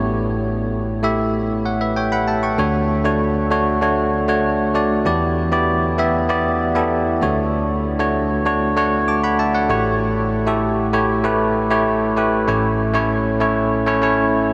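This pop fragment, cut from a longer piece, carries a dramatic, nostalgic mood at 97 BPM in a straight 4/4, tuned to A4 = 437 Hz. A single tine electric piano plays the whole passage solo across about 14.5 seconds, reaching from A1 up to D6. Its tone is bell-like and bright, with a clean, direct presence sitting up front. A huge, wet ambient reverb with an 8.9-second decay soaks the mix in a dreamy haze. The harmony opens on A7, moves through Dmaj7 and Em7 from 2.6 seconds, returns to A7, and comes to rest on a plain A chord at 12.5 seconds.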